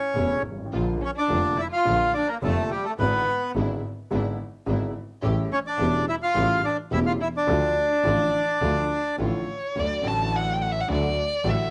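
A rubato tango in 4/4 at 106 BPM and D harmonic minor, this passionate, tense fragment is carried by a reedy, close-miked bandoneon with tape grit and plate reverb, set above a distant, floating bowed double bass played sul tasto, a natural-sounding baby grand piano accompaniment and very quiet, rich string-section stabs. A background violin with vibrato and portamento traces an expressive second line from 1.0 seconds, then takes a solo from 9.8 seconds once the bandoneon has stopped at 9.2 seconds. The whole has the homemade character of a cassette recording in a booth.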